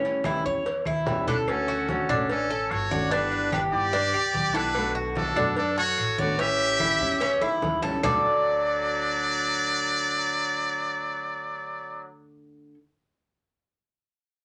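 An excerpt of relaxed Cuban son and guajira opens with a metallic, double-strung tres picking arpeggios up front, alongside fingerpicked flamenco guitar on fresh strings, a dark, thumpy pizzicato upright bass, and low-tuned congas played with soft hands. Tight, high-tuned cowbell and bongos sit in the background, while woody claves tick very quietly close by. At 1.3 seconds two trumpets enter together: a brilliant, buzzy, metal-muted trumpet carries the jazz-styled melody with vibrato and scooped notes, and a clear, vintage-toned open trumpet plays a pop-style second line beneath it. The harmony moves gently through major-seventh, sixth and minor-seventh chords, with drum fills marking the turns between sections. The percussion stops at 8.1 seconds, leaving the guitar, tres, bass and horns to settle onto a plain D chord in a small, wet room.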